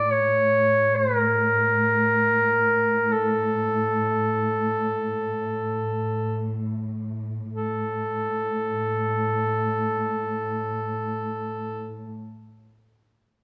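Heard through a moderate scoring-stage reverb, this solemn, longing passage of Caucasian folk music unfolds in free time, cut from a longer piece. A solo duduk, distant and roomy yet up front, carries the melody between A4 and D5 with scooped notes, while the music slows down over the first 7.5 seconds before a new section begins. Beneath it a lush, warm, bowed cello section holds a drone on A2 throughout, its vibrato expressive and symphonic.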